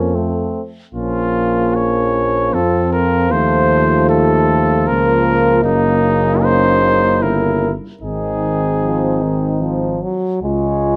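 Classical brass quintet music in a grave, heroic triple metre, with a mellow trumpet carrying the melody up front over a punchy flugelhorn second line, a French horn with light vibrato and a bright trombone supporting in the background, and a smooth-topped bass trombone anchoring the bass up front, all in a dark production with moderate large-studio reverb as the harmony moves from F through B-flat minor and a diminished chord to a closing D-flat at 10.4 seconds.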